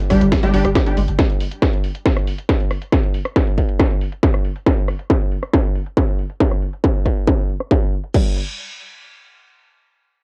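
A straight 4/4 pulse drives this dark, hypnotic peak-time techno fragment, where a distorted, up-front electronic kick and a techno kit of cracking snare, metallic hats, rim clicks and crash run until 8.2 seconds, a filter sweep shaping the drums until 8.1 seconds, while an aggressive, detuned sawtooth rave stab, a thick saturated sub bass and a mellow, woody wave-folded pluck riff in the background sound only in the first second or so, the pluck returning briefly at 8.1 seconds, the whole track carrying the grit of a cassette home recording and light reverb.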